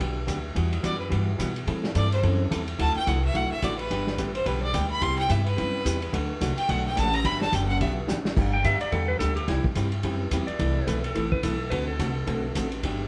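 A band playing live in one stone room comes through with a moderate, 1.3-second reverb, in this playful, down-home western swing excerpt at 215 BPM in G major, swung in 4/4. The vintage drum kit sits muffled and lo-fi, with a medium-tuned snare, tight kick, hi-hat, ride and crash, and a rolled-off top, while the upright bass thumps along in pizzicato, woody and gut-strung. A compressed, picked hollow-body jazz guitar fills out the accompaniment with a dark, clean tone over chords such as Gmaj7, Emadd9, Am7 and Dadd9. Up front, a single bowed fiddle takes the melody from 0.8 s, clear and biting with light vibrato and a smooth top. After a drum fill at 8.1 s, a clean electric lap steel played with fingerpicks and a slide steps in for its own solo at 8.5 s, shaping its notes with volume swells as the chords move through G, C, Amadd9 and D7.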